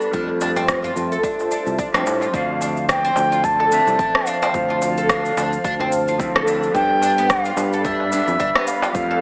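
Organic downtempo in D dorian at 109 BPM with a swung sixteenth feel, this hypnotic excerpt opens with a dark, clean electric guitar under a filter sweep, set in the background with a warbling, lo-fi tape-like pad, both pumping with sidechain and treated with chorus. Woody, double-strung oud arpeggios with digital delay sit over a growly, punchy fretless bass, while an overdriven electronic kick and an up-front shaker and rim click mix with a clay-shelled darbuka played with soft hands in the background. At 2.3 seconds an airy, reedy bansuri enters up front with tape echo as the chords move from Fmaj7 to Dm7 and then G, all in a scoring-stage reverb with a small-speaker sound.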